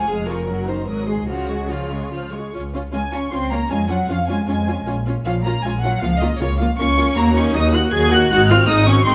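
Stormy and dramatic, this excerpt from a quick classical-period orchestral movement in Db major moves at 156 BPM in 3/4 with a rubato feel, shifting into a new passage at 2.5 seconds. A focused, distant first violin section carries the melody high above a smooth, even second violin line, while close, lush violas fill in the accompaniment. Expressive cellos and up-front double basses anchor the bass, all bowed with vibrato in a moderate recital hall reverb.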